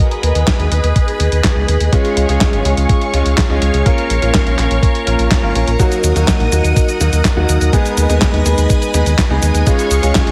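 Italo disco with a bittersweet, danceable mood, cut from a longer piece: a lush vintage string machine holds sustained chords through phaser and ensemble chorus, while a round, deep analog bass sits up front beneath it. A dusty, gritty soul sampler-style kit of cabasa, handclaps, hi-hat and snare, re-recorded in a large room, comes in at 0.1 seconds and is joined by a thumpy electronic kick from 0.5 seconds, and a bright concert grand piano enters at 1.9 seconds with delayed stabs. The chords cycle from Abm/Eb through Db, Bbm and Ebm, and the whole has a heavily compressed radio sound with light reverb.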